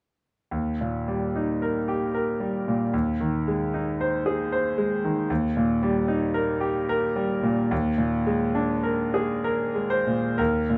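Lyrical and warm, this brief excerpt of a romantic character piece for solo piano unfolds in Eb major at an unhurried 60-78 BPM in 3/4, its rubato lending the phrases a breathing, flexible feel. A brilliant concert grand, heard up front through close, detailed microphones in a nearly dry room, plays from 0.5 to 10.8 seconds, its deep bass anchoring a natural, bright upper register. The harmony moves gently from Eb to Ab over an Eb bass, back to Eb, then to a Bb7 over Eb.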